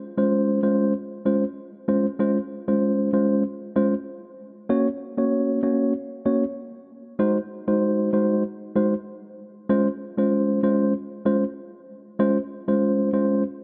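A mellow tine electric piano plays alone from 0.2 s, sitting up front with a clean tone heard through built-in speakers, in a joyful, breezy afrobeats excerpt at 96 BPM in Db major with a light 16th-note swing. Its chords move from Dbmaj7 through Gb and Ab7 before returning to Dbmaj7 at 9.7 s, where a new section begins, and the piano stops at 13.4 s. A moderate plate reverb adds a long tail, and the overall production is dark and warm.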